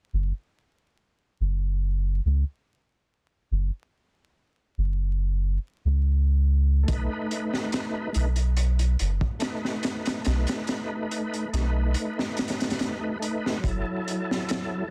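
A melancholic, smoky trip hop piece, cut from a longer work, moves at an unhurried straight four-beat pace. A soft dub sub bass opens it alone from 0.1 seconds, deep and round with a sustained triangle-and-square-wave tone placed up front. At 6.8 seconds an overdriven tonewheel organ arrives, thick and gritty with percussive second-harmonic attacks, chorus vibrato, a fast rotary speaker and harmonic tremolo. A crunchy breakbeat drum kit joins almost at once, saturated and dark with a rolled-off top, a punchy kick and a high-tuned snare that sound like a small room. The harmony moves from F#5 to B7 and settles on F#m7 as a brief closing section begins near the end. Vinyl crackle and a dense, heavily limited modern master give the whole a dusty, compressed sheen.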